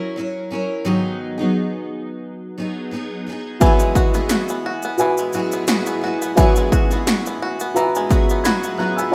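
A lightly swung 87 BPM groove in 4/4 carries this tender, wistful acoustic pop piece: a bright, full-bodied, double-tracked steel-string acoustic guitar plays alone until 3.6 seconds, when punchy, overdriven 80s electronic pad drums with kick, gated snare and shaker arrive up front, joined by a mellow, felt-muted upright piano and a twangy banjo tracing arpeggios through tape echo, as the chords move from F#7 to G#m7 to Eadd9 in a rough home-demo mix with light small-room reverb.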